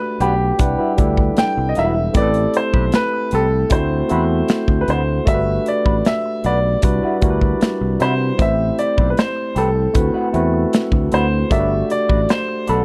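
A dry, close recording in a small room gives this cut from a longer piece of lush 1970s-style soul a bittersweet, cinematic mood, as chords such as Gmaj7, Cmaj9#11, Am9 and D13 cycle beneath a clear, intimate baby grand piano melody, its action noise audible and its notes sustaining long. A barky, lightly overdriven tine electric piano plays accompaniment through a combo amp, while a dark, hollow-body electric guitar sits in the background with a clean, fingered riff coloured by wah and spring reverb. From 0.2 seconds a round, punchy fingered electric bass and an up-front acoustic drum kit with a medium-tuned snare, hi-hat and kick join the groove.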